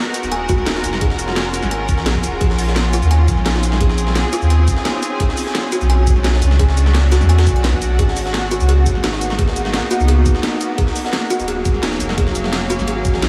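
A straight 4/4 groove at 172 BPM drives this soulful, lush liquid drum and bass, tuned to A4 = 435 Hz. A layered drum and bass kit of cracking snare, bright hats and shaker comes in at 0.1 seconds, joined by an electronic kick drum knocking from 0.5 seconds, both re-recorded in a small room. Behind them, a gritty, compressed breakbeat sampler-style kit adds a high-tuned snare and hi-hat, each high-pass filtered and kept in the background. A deep, round sine sub bass sits up front, while a shimmering, ethereal pad with vintage, detuned warble holds sustained chords with an octave-up shimmer, chorus, granular texture and sidechain pumping. A woody, plucked kalimba plays short, airy arpeggios through an analog delay as the chords move from D#m7 through A#m7, Bm7 and G#m7 back to D#m7, all set in a huge ambient reverb that gives this section of a longer piece its dreamy feel.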